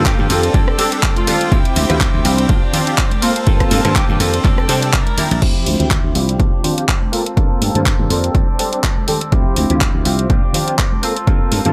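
A growly, thumbed slap bass anchors this sunny, funky filtered disco house excerpt, its dry, bright tone pumping against a punchy, tape-warm electronic kick drum that sits up front. A layered house kit adds handclaps, hi-hat, ride, crash and rim clicks over a swung 4/4 groove, while a tube shaker and congas sit softly in the background. A detuned sawtooth polysynth comps with a plucky filter and chorus and phaser shimmer, alongside a clean, compressed twelve-string electric guitar riff, with the bass, synth, guitar, horns and percussion all pumping under sidechain and low-pass filtering. A distant, roomy horn section carries a short tape-echoed melody until 4.2 seconds, and a very quiet, focused string section holds bowed chords with vibrato until 5.4 seconds, when a filter sweep takes over. Extended chords such as Gm11, F69, Dm11 and Bb69 cycle beneath it all, set in a digital ambience.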